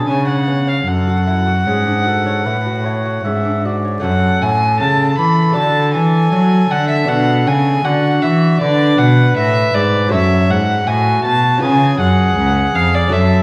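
This baroque-style classical sonata movement in F# minor moves at 78 BPM in an unevenly pulsed 4/4, with a dance-like, radiant mood, and it is cut from a longer piece. A warm solo trumpet carries the melody over bright, fingerpicked lute accompaniment on double strings, a close, rich cello bass line in period style, and a dark, nasal violin second line that joins at 0.1 s. The ensemble sits in a reverberant recital hall under a layer of vinyl crackle, with harmonies moving through F#m, D and Bm before settling on C#7.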